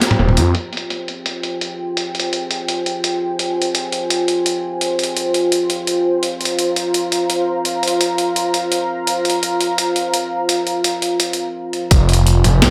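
Cinematic and heavy, this half-time drum and bass excerpt at 169 BPM in F minor is built on a dark, detuned analog pad of sustained chords, treated with chorus and sidechain pumping, under a gritty, pitched-down sampler-style boom bap kit of hi-hat, high-tuned snare and toms, filtered and given analog delay. A thick, swirling phased saw bass flickers briefly at 0.2 seconds and returns at 11.9 seconds alongside a tight, layered electronic kick. A moderate plate reverb and an echo-heavy mix give the track a spacious depth.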